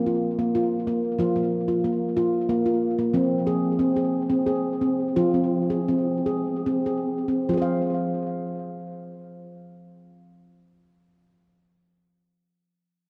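The music moves in an unhurried 6/8 pulse felt in long dotted-quarter beats, and it slows down between 3.1 and 7.5 seconds. This hypnotic, meditative piece of world-style tuned percussion is cut from a longer work and features a solo handpan, which plays from the opening until 10.8 seconds across a span from F3 to F5. The nitrided steel rings bright and up front, with sharp finger strokes giving each note a clear attack. The opening harmony rests on a Bb5/F color before settling into F minor, and a new passage begins at 7.5 seconds. Tape echo trails the handpan's tones, and a wet church reverb with a long decay gives the recording a spacious, enveloping atmosphere.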